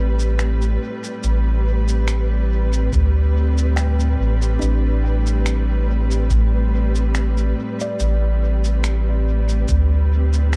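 Dark, distant bowed strings with vibrato hold a sustained Am9 chord over a round, soft, up-front sub bass from the start of this hazy, deep ambient dub piece at 71 BPM in A minor. Muffled, compressed electronic shaker and finger snaps with studio reverb and dub echo enter at 0.2 seconds, a deep analog kick in the background follows at 2.9 seconds, and from 3.8 seconds a mellow, hollow, ringing kalimba plays soft arpeggios with dub echo, all set in a small room ambience with a dark production.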